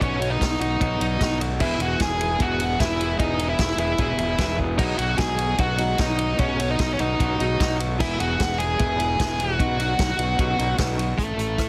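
Heavily compressed and radio-like with light reverb, this carefree, wistful indie rock excerpt puts a dark, distorted octave-fuzz lead guitar melody with tape echo up front over a picked, overdriven electric guitar riff, a fingered fuzz electric bass that sounds direct and amped, and a natural vintage drum kit with a tight kick and rolled-off top, while a very quiet, lo-fi electric guitar through a small old amp adds a slightly broken-up riff from 4.8 s, just after a drum fill at 4.6 s.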